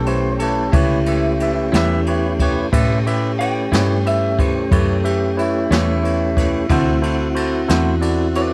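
A small room's light reverb frames this soulful, gritty slow blues in 12/8 at 60 BPM in A mixolydian, where a slightly broken-up, compressed electric guitar through a small old amp plays a clean solo line with subtle chorus over a mellow, flute-like tonewheel organ on a slow rotary speaker, a round, foam-muted fingered electric bass sitting up front, a bright, barky tine electric piano and a jazz brush drum kit with dark cymbals and a boomy kick, while a second picked guitar with tremolo joins in the background at 1.7 s and the chords move from A7 to D7 at 6.7 s.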